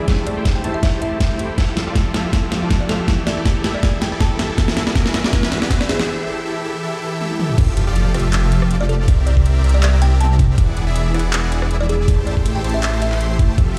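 A bright, playful future bass excerpt at 160 BPM in F major opens with a knocking electronic kick, a dubstep kit of deep snare and metallic hats, huge supersaw chords through a low-pass filter, a gritty background kalimba melody, a brief deep piano and very quiet bowed strings, with a faint riser arriving at 0.9 seconds, then a fingerpicked Celtic harp ringing in at 1.6 seconds before a thick, saturated detuned saw bass drives the drop at 7.6 seconds, all in a stone-room reverb.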